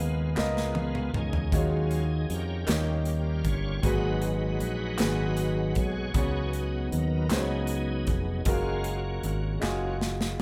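A shouting tonewheel organ leads this slow, soulful gospel excerpt, its lightly overdriven chords turning through a slow rotary speaker with chorus vibrato as it takes a solo across the whole passage. Underneath, a brilliant concert grand piano with deep bass and a vintage smoothness fills in the harmony, moving through rich chords from C#13 and D#m11 toward a closing F#maj9. A growly, punchy fingered electric bass sits up front beside a polished, airy studio drum kit with a punchy kick and medium-tuned snare, whose fills arrive near the start and again at 9.6 seconds. Crisp group handclaps join at 0.4 seconds, very quiet and close. The band plays live in one room with light reverb, giving the uplifting 6/8 groove at 52 beats per minute a natural, gathered feel.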